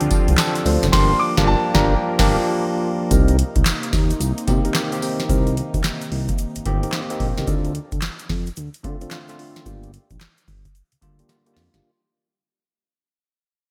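An R&B groove in the new jack swing mold opens at 110 BPM in C dorian, with a bell-like tine electric piano, a swirling phased pad, a gliding synth bass and a booming analog drum machine all sounding from the start, a very quiet grainy egg shaker beneath. The drum machine sits up front with a deep kick, crisp snare, metallic hats, handclaps, tambourine and crash, its gated reverb giving the hits a punchy, confident snap over a 16th-note swing. A tonewheel organ slips in at 0.7 seconds with background stabs through a slow rotary speaker and delay, and a grand piano adds a brief high melody from 0.9 to 2.8 seconds during a band accent and short break. The pad drops out at 7.4 seconds as the passage fades over chords moving from Dm7 and Gm7 to Cm7 and back, closing on a drum fill at 11.3 seconds. The bright, 1980s-style digital production wraps the parts in light reverb, with the dark sawtooth bass gliding smoothly under the clean, direct electric piano.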